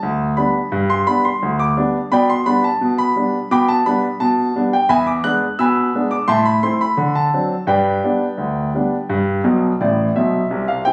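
A clear concert grand piano carries this lively, jaunty ragtime piece alone, its deep bass and natural tone sitting up front at 86 BPM in straight 2/4, G major. The harmony moves from G through G/B, E7, Am and D7 before settling back on G, and a short piano fill arrives at 9.4 seconds. Captured on a phone in a club room with moderate reverb and some compression, the clip is cut from a longer performance.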